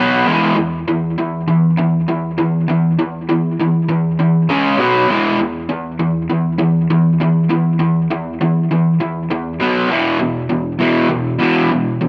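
A raw, bright garage electric guitar carries this swaggering, rowdy rock excerpt on its own, picked and double-tracked up front with overdrive and analog delay as it ranges from E2 to C#4. At a straight 100 BPM in 4/4 and in E major, it moves between chordless passages and C#5 and B5 power chords before shifting into a new section at 9.9 s on an E5. Light reverb and a digital ambience surround the playing, with a faint mains hum beneath.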